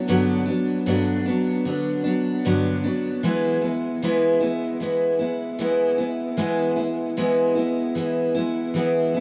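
A straight 4/4 pulse at 76 BPM carries this hazy, nostalgic indie pop fragment in E major, tuned to A4 = 441 Hz, where a lone picked steel-string dreadnought acoustic guitar, bright, full-bodied and placed up front, moves from Gmaj7 to E at 3.2 seconds across its 9.2 seconds, bathed in lush chorus, vibrato and tape echo within a small room's moderate reverb and a rough home-demo mix.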